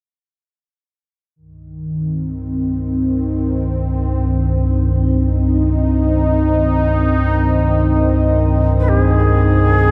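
Cavernous and ominous, this free-time dark ambient drone in C minor, tuned to A4 = 439 Hz, opens at 1.4 s with a bright, detuned sawtooth pad holding sustained Cm chords under chorus and shimmer reverb, joined at 1.9 s by a deep, nasal, rumbling drone with lush chorus, while a breathy, chiffy shakuhachi melody with tape echo drifts in from a distance at 8.8 s, all set in a vast, echoing cathedral space of this fragment cut from a longer piece.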